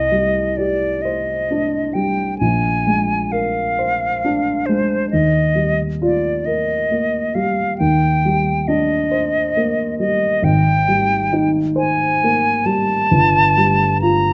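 A slow, rubato lilt in 6/8 carries this mysterious, wistful impressionist duo, a passage cut from a longer piece. An airy concert flute with vibrato and a soft attack sings the expressive melody up front, while a mellow, dark baby grand piano, natural in tone with short sustain, supplies the accompaniment beneath it through rich ninth and added-ninth harmonies. Close, detailed microphones capture both instruments within a moderate recital hall reverb.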